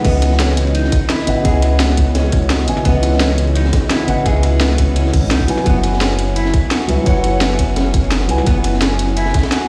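Liquid drum and bass with a dreamy, soulful mood, this short drop cut from a longer piece pairs a felt-muted upright piano, intimate with audible action noise and tape echo, with a clean, fingered electric guitar playing echoing arpeggios and an airy, breathy pad holding chorused chords in the background over a C#m11 to F#7sus4 change. Underneath, a deep, rumbling detuned saw bass sits up front beside a tight electronic kick, while a produced kit adds a cracking snare, crash and hi-hat, and a gritty, saturated breakbeat kit with dark cymbals and a rolled-off top murmurs behind them. The whole mix carries light reverb and the stony room sound of a big system playing in a bare space.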